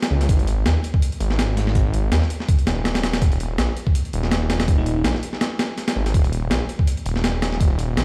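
A gritty, compressed breakbeat drum kit with a thumpy kick and medium-tuned snare drives this nostalgic, atmospheric drum and bass cut at 164 BPM, joined almost at once by a thick, menacing detuned saw bass with tube saturation that sits up front beside it. A very quiet, bell-like FM electric piano with chorus and tremolo sparkles briefly at 4.8 seconds over chords moving from G#5 to D#5. The short section, cut from a longer piece, sounds as if played on a big sound system in a bare stone room, with vinyl crackle.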